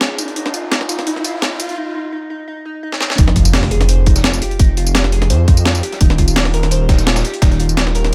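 Bathed in digital ambience, this melancholic, rolling liquid drum and bass passage opens with a ringing, harp-like synth pluck playing arpeggios through chorus and delay, over a menacing, detuned saw bass that swells up front and a gritty, tape-warm breakbeat kit, while a background riser leads into a break and a drum fill before the drop at 3.2 s lands with an impact, a tight, layered electronic kick and a dusty soul sampler-style kit tucked in the background.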